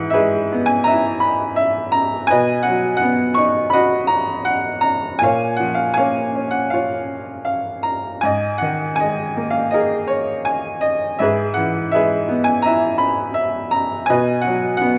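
Warm and peaceful, this lyrical classical excerpt, cut from a longer piece, features a bright upright piano playing solo with a flexible rubato feel in 4/4, its woody, brilliant tone sitting up front and ranging from G#2 to C#6. Chords drift from E/G# through B, A#m7 and G#sus2 before circling back, set in a moderate recital hall reverb. The sound carries the worn, warbling character of old cassette tape, with a warbly pitch drift coloring the whole recording.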